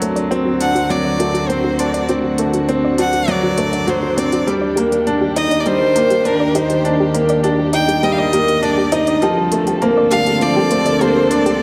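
A bright upright piano leads this short cut from a piano and strings electronica piece, playing an up-front riff with a woody tone, audible action noise and a touch of delay. Around it, a chamber string section holds sustained chords with light vibrato and a soft, sul tasto attack. A clear violin enters at 0.6 s with a focused, close melody carrying vibrato and delay. In the background, a round synth pluck plays detuned arpeggios with chorus and delay, its sound shaped by a filter sweep throughout. Smooth, layered electronic hi-hats sit low in the mix at 101 BPM in 4/4 with a straight feel. The passage works as a cinematic, intimate build-up over D7, Ebmaj7 and Bbmaj7/D, bathed in a recital hall reverb.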